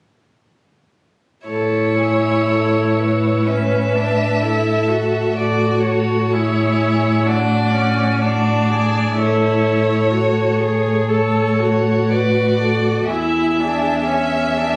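Tender and warm, this slow, rubato romantic movement for string quartet in A major moves at 62 BPM, its rich first violin singing the melody from a distance with vibrato and portamento, while a dark, woody second violin carries a second line, a focused, smooth-topped viola fills the accompaniment, and a close, up-front cello anchors the bass with soft attacks and expressive slides; all four enter together at 1.5 s and reach an E7 chord at 13.1 s, heard through a phone in a recital hall with added reverb and compression in a passage cut from a longer piece.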